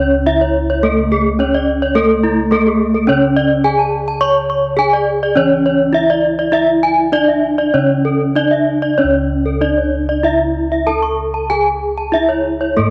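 Wrapped in a wet spring reverb and the character of a home cassette recording, this brilliant, hypnotic fragment of Balinese gamelan in C# pelog moves at a straight 95-106 BPM in 4/4, with a close-miked, cassette-coloured bronze metallophone carrying the melody and a second bronze metallophone spinning bright, shimmering arpeggios from paired tuning, both struck with horn mallets, while soft, round bossed gongs on padded beaters hold the bass beneath them before the music shifts into a new section at 9.0 seconds.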